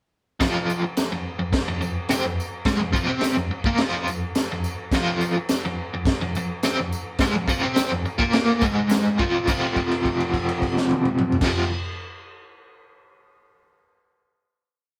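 Recorded with light reverb, this short piece sounds like a band playing live in one room, raw and swaggering garage rock in F minor at 106 BPM in a straight 4/4. A biting overdriven electric guitar sits up front with a double-tracked, picked octave riff ranging from F2 to C4, its tone treated with tremolo. Beside it, a crunchy breakbeat drum kit lays down a garage stomp groove of kick, high-tuned snare, toms and dark crash cymbal, its saturated, gritty sound rounded off with a rolled-off top. A jingly tambourine plays in the background and stops at 9.8 seconds. The riff runs over F minor until 9.5 seconds, when the band lands on a final F5 chord, holding the note until 11.4 seconds before the guitar rings out to 11.7 seconds.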